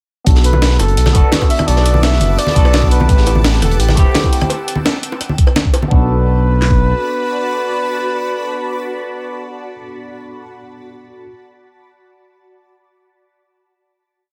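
A barky tine electric piano with phaser opens this soulful, lush liquid drum and bass piece, soon joined by a smooth, up-front synth bass playing a dub-style line, a knocking drum and bass kit layered with a gritty, pitched-up sampler-style break and a saturated breakbeat in the background, soft-handed congas and bongos, a breathy flugelhorn soloing freely through dub echo, and a shimmering, detuned pad with chorus and sidechain pumping that holds the final Bm7 chord until 9.5 s, after which the piano rings on alone to 11.3 s.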